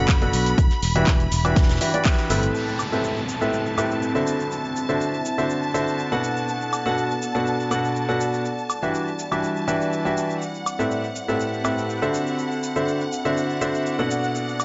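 A clear, worn concert grand piano sits up front throughout this soulful, energetic piano house excerpt, its deep-bottomed riff pumping with sidechain, softened by a low-pass filter and trailed by tape echo. Behind it, a rich, smooth violin section holds bowed sustained chords with vibrato, also pumping, as the harmony cycles through Bm7, Em9, Am9 and D9. In the opening moments, a punchy, overdriven electronic kick leads the rhythm. A very quiet, dry 70s kit with a fat snare, hi-hat and shaker plays alongside the kick, and a direct fingered electric bass adds a filtered low end. After a band accent at 2.1 seconds, the bass drops out at 2.5 seconds as an electronic downlifter sweeps through, leaving the overdriven house kit's bright hats, handclaps, shaker and woodblock to carry the groove. From 2.9 seconds, a warbling, nostalgic, lo-fi pad of detuned sawtooth and triangle tones fades in slowly behind the piano, with chorus and its own reverb, while a lush hall reverb and a dark top end give the mix a soft, rounded glow.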